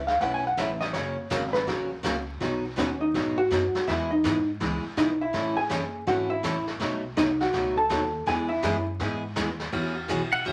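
Vinyl crackle and a wet studio reverb frame this cheerful, playful western swing cut in E major, swinging along at 164 BPM. A dark, clean hollow-body jazz guitar takes an up-front solo until 9.7 seconds over a bright, full-bodied jumbo acoustic guitar, a woody, thumpy upright bass and a brushed drum kit with dark cymbals and a punchy kick. At 10.3 seconds a twangy pedal steel guitar slides in with volume swells just as the passage cuts off.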